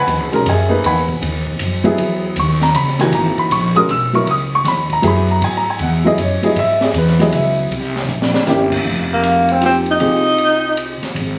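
A swinging 3/4 pulse at 157 BPM drives this intense, cool modal jazz excerpt in C# dorian, where a smooth, vintage grand piano comps up front over a woody, thumpy pizzicato upright bass on gut strings and an open acoustic kit, with dark cymbals, a high-tuned snare and a boomy kick, that plays a fill at 8.1 seconds, before a mellow, distant tenor saxophone with soft attack and vibrato takes a brief solo from 9.1 seconds as the harmony moves from C#m11 through C7b9 to Fm9, all captured with a phone-in-the-room immediacy, light reverb and compression.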